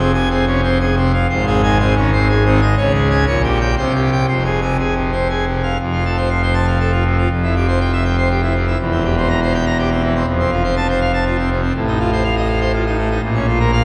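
A full pipe organ dominates this 13.8-second excerpt of a classical organ toccata, playing solo with its mixtures drawn and a romantic voicing that sounds majestic and brilliant. The mood is dramatic and stormy, moving at 121 BPM in a straight 3/4 across a range from E1 up to Bb5. It opens in F minor, passing through Ab, Db and C chords before settling back on F minor, then turns to F major at 5.8 s. The second section then travels through C/F, C7/E and F7/A before arriving on Bb minor as the cut ends. The organ sits up front in the mix, but a wet church reverb with a 3.3-second decay places the listener further back in the room.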